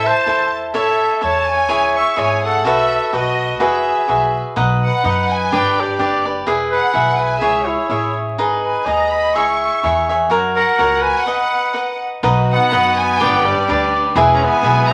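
Mariachi-style Mexican folk in a proud, romantic mood at 126 BPM in a swung 2/4, with a focused, lush studio violin section singing the melody in E major before the music moves to B major at 4.6 s, a clear classical-style solo trumpet playing a second line, a crisp, picked cavaquinho up front as accompaniment, and a woody pizzicato upright bass holding the low end; after a break at 11.3 s, a very quiet symphonic violin section with soft attack and a smooth top adds sustained chords from 12.2 s, set in a large, wet studio reverb with vinyl crackle in this short cut from a longer piece.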